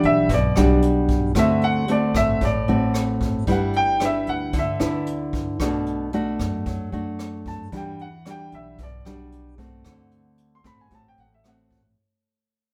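A clear, up-front concert grand piano takes the solo in this relaxed, sophisticated bossa nova excerpt at 113 BPM, its melody ranging from D5 to C6 over a straight 4/4 feel and a fade-out that runs the full 12 seconds. Beneath it, a thumb-plucked nylon-string guitar sits close and warm, a woody, thumpy upright bass with gut strings is played pizzicato, and a natural-sounding jazz kit on brushes adds hi-hat, rim click and a boomy kick. The band plays live together in one studio room with a short, wet reverb, moving through Em9, D7, G6 and Bm7.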